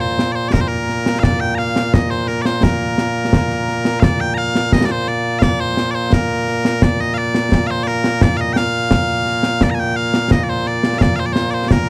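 Ceremonial and proud, this short cut from a longer piece of Scottish traditional pipe music moves at 86 BPM in a straight 2/4 in Bb major. Piercing, continuous bagpipes carry the solo melody up front from the very start, ranging from Bb2 to Bb5, while a concert snare drum and concert bass drum enter at 0.2 seconds with close, acoustic playing and dark cymbals. The sound is dry and close in a small room, with the character of a 1970s-style studio recording, and the same opening section is played twice.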